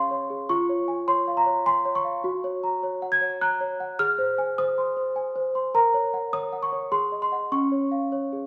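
Dreamy and innocent, this classical lullaby for celesta sways in 3/4 at 103 BPM with a straight feel, set in D-flat major and tuned to A4 = 438 Hz. The celesta plays alone for the full 8.5 seconds, ranging from Db4 up to Ab6 with a bell-like, sweet tone from medium felt hammers. It sits up front, delicate and airy, inside a recital hall reverb that lingers for about 1.8 seconds and gives the sense of a church or concert hall. The harmony moves through Db/F, Gb, Ab and Gb/Bb before an Ab7 settles onto Db at 7.5 seconds. This short passage is cut from a longer piece.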